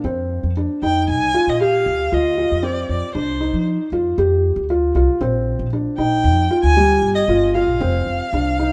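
Lightly reverberant and intimate, this restless, pensive excerpt of contemporary chamber music in 5/4 sets the arpeggios of a dark, felt-muted upright piano, its action noise audible, over a woody, growly pizzicato upright bass, while a rich bowed violin enters at 0.8 s with an expressive melody full of vibrato and portamento.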